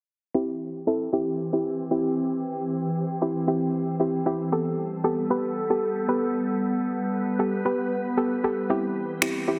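Summery and euphoric, this dance-pop excerpt moves at 115 BPM in a straight 4/4 in C major, with a soft, round pluck carrying the accompaniment from 0.3 seconds while a glassy, ethereal FM pad enters at 0.6 seconds with slow-blooming sustained chords through ensemble chorus and its own reverb. Both parts sit under a filter sweep that runs throughout as the harmony moves from C to Gadd9 and back to C. Just before the end, overdriven electronic finger snaps arrive at 9.2 seconds, all within a lush hall and a dense, heavily limited modern master.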